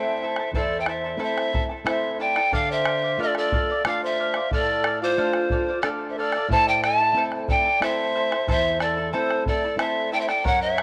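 Andean folk in A minor at 91 BPM in an earthy, festive 3/4, this excerpt from a longer piece moves from Am to Dm and back to Am. An up-front, breathy bamboo pan flute carries the tongued, chiffy melody, and a mellow large quena adds a soft-edged second line with vibrato. A bright, shimmering charango and a fingerpicked flamenco guitar supply accompaniment, while a deep, dry bombo joins at 0.4 s, all within a moderate plate reverb.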